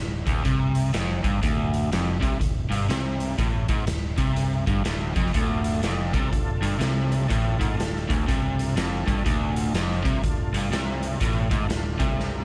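Lightly reverberant and brooding, this heavy blues rock power trio piece with a southern rock edge swings on a crunchy, double-tracked guitar riff up front, growling overdriven fingered bass and a saturated, punchy garage drum kit in a pumping stone room, while a thick, overdriven tonewheel organ joins in the background at 5.4 s with sustained chords through a slow rotary speaker and chorus vibrato, before a drum fill at 12.2 s.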